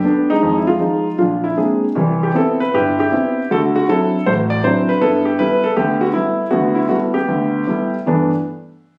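Playful and swinging, this short solo jazz piece for concert grand piano moves at 158 BPM in 4/4, with a lilting eighth-note swing loosened by rubato in G major. The piano carries everything alone across its 8.3 seconds, reaching from G1 up to D5 with a deep bass. Its sound is intimate and natural, set up front with the action noise of the instrument clearly audible. The harmony travels from Fm7 through Bb9 and Cmaj7 to D9 before settling on G69 at 5.0 seconds. A moderate studio reverb gives the piano a modest sense of space, and the phone recording's compression keeps it close and present, as though this passage were lifted from a longer performance.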